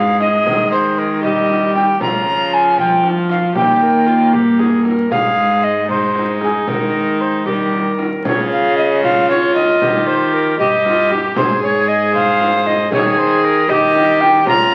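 An airy alto recorder with a crisp, chiffy attack leads this courtly, festive Renaissance-style consort dance in a straight 6/8. Behind it, two gut-string violas played with light vibrato carry a reedy second line and a warm accompaniment, while a distant, nasal cello holds the bass and a small, bright frame drum joins at 0.2 s. The brief phrase is heard twice, its repeat starting at 8.2 s, set in a stone room's moderate echo and heard through the crackle and muffled top of a very old 78 rpm record.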